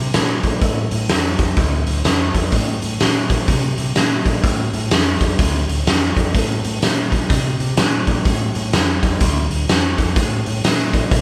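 Smoky and brooding, this short blues rock and southern rock power-trio excerpt in D minor swings at 126 BPM, with a growling, round fingered electric bass pushed through overdrive beneath a raw, gritty garage drum kit that sits up front with a punchy kick, fat snare and hi-hat in a bright stone room, all captured as a band playing live together under light reverb.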